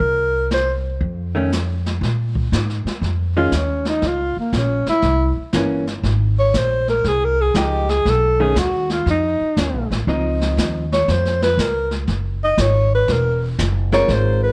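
Swinging in 4/4 at 119 BPM, this moody, cool stretch of small-group jazz puts a breathy, whispered alto saxophone up front, soloing from 2.0 s with vibrato and scooped notes, over woody, thumpy pizzicato upright bass, a small-room brush kit with a boomy kick, and a dark, clean hollow-body electric guitar accompanying from 1.3 s to 10.9 s and again from 13.9 s, the whole mix carrying light reverb and the warbling pitch drift of worn cassette tape.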